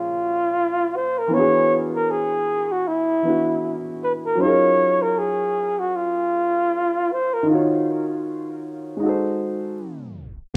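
Reflective and hazy, this short hip hop fragment cut from a longer piece sways with a lazy swung feel as a breathy flugelhorn carries a whispered, intimate jazz melody with vibrato and scooped notes, softened by tape echo and plate reverb. Beneath it, a dark upright piano lays down woody, vintage chords through a low-pass filter, including lush Gbmaj13 and Ebm9 colors. The horn drops out at 7.5 seconds, leaving the piano alone in a rough home-demo sound until a tape stop, beginning at 9.8 seconds, drags the music to a halt by the end.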